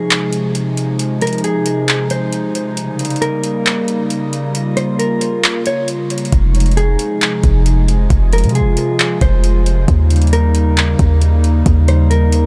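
A digital ambience hangs over this hazy, ethereal cloud-rap hip hop excerpt in F minor at 135 BPM, felt in half-time, where a hollow, flute-like pad with chorus and sidechain pumping sustains Fm7 and Eb7 chords beneath a dark, clean electric guitar melody carried by tape echo, an up-front electronic R&B kit of gentle kick, metallic hi-hats and handclaps keeps the beat, and a deep, boomy 808-style bass enters at 6.3 s.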